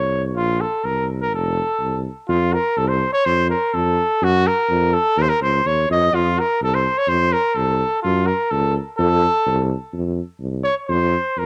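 A straight 2/4 pulse at 126 BPM keeps speeding up across this short, restless Balkan folk cut, set in F phrygian dominant with chords moving from F through Gb and Dbmaj9 and back. Up front, a vintage-toned trumpet with a cassette-tape color carries the fiery, classical-style melody between F4 and Eb5, taking a solo from 9.9 seconds, while a mellow, smooth-topped tuba with transformer saturation holds down the bass from F1 to Gb2. A moderate spring reverb and studio ambience surround this home cassette recording, which is taken from a longer piece.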